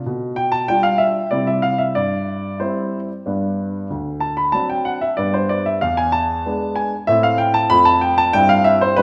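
Set in a reverberant recital hall with a 1.6-second decay, this playful, cheerful 9-second fragment of a classical-period piano sonatina in C major moves at 94 BPM in a straight 3/4, with a warm, present grand piano playing alone and up front between D2 and B5, its long sustain carrying a progression that passes through G7/B, D7, E7, Am and F before settling on C/G.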